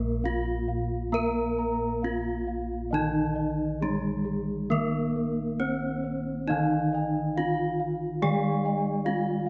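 In a straight 4/4 pulse, this shimmering, ceremonial Javanese gamelan excerpt sets a bright, up-front bronze metallophone melody struck with a horn mallet over round, beating bossed gongs in the bass, a vintage, band-limited metallophone accompaniment played with a wooden mallet, and mellow, soft metallophone arpeggios from padded disc mallets, while a second set of bossed gongs joins at 6.5 s with gentle arpeggios on padded beaters, the metallophones' paired tuning giving ringing, pulsing beats inside a wet concert-hall reverb.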